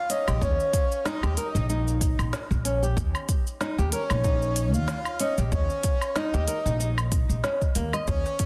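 Peaceful and warm, this short excerpt of organic downtempo moves at an unhurried, lightly swung pace over a single Eb7 chord color. A breathy, flute-like synth lead sits up front with a soft attack, sustained tones and vibrato, dressed in lush chorus and tape echo. Beneath it, a dark, fingerpicked nylon-string guitar plays classical-style arpeggios with its own tape echo, while a growly pizzicato upright bass, woody and tube-saturated, anchors the low end close to the listener. The rhythm comes from a deep, layered electronic kick and an organic electronic kit of crisp hats, shaker, woodblock and a woody snare with soft clipping, re-recorded in a small room. Near the end, at 8.3 seconds, a very quiet, hard-handed darbuka with a metal shell adds a brief accent, all within a light studio reverb and a dense, heavily limited modern master.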